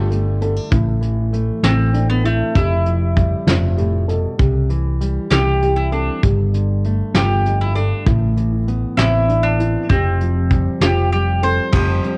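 A dry, intimate home cassette recording of nostalgic indie folk in 6/8, cut from a longer piece. A round, double-strung mandolin carries the melody over full-bodied fingerpicked dreadnought guitar, boxy, woody upright piano arpeggios touched with analog delay, an up-front hollow-body electric bass with tube saturation, and a soft brush kit with a fat snare and punchy kick. At 11.7 seconds a felt-muted upright piano, a bright picked acoustic guitar in the background and very quiet group handclaps join as the arrangement builds.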